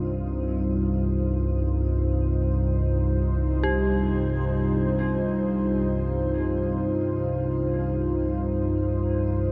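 Dark ambient drone in free time and C minor, desolate and ominous, heard here as a 9.5-second cut from a longer piece that rests on a single C minor chord throughout. At the bottom, an analog drone holds low notes, its sawtooth, pulse and wave-folded tones warbling and evolving with a vintage, mellow character under chorus, sitting up front as the loudest part. Above it, a dark analog pad sustains chords in a moody, detuned voice with a sub octave beneath, its slow attack and long release smoothed further by chorus and shimmer reverb. Quieter still, a detuned synth bell traces arpeggios with an eerie, inharmonic FM ring, each note struck quickly then decaying, carried by tremolo, chorus, a diffuse ambient delay and shimmer reverb. All three parts sound together from start to finish inside a huge ambient reverb with an 8.6-second tail, giving the piece a cavernous, unsettled stillness.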